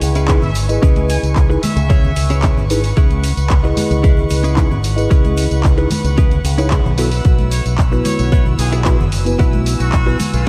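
A mellow tine electric piano with tape echo pumps against rich, bowed chamber strings over a bright, envelope-filtered fingered bass, pop drum kit with handclaps, hi-hat and tambourine, and background egg shaker and congas, before a clean, direct-recorded electric guitar riff with subtle chorus arrives at 0.2 s, a punchy electronic kick takes the front at 0.3 s, and a nasal, straight-muted trumpet section with analog delay states the melody from 0.4 s and again at 7.5 s in this cosmic, groovy nu-disco excerpt at 112 BPM in C# minor, moving from C#m7 to Bsus4.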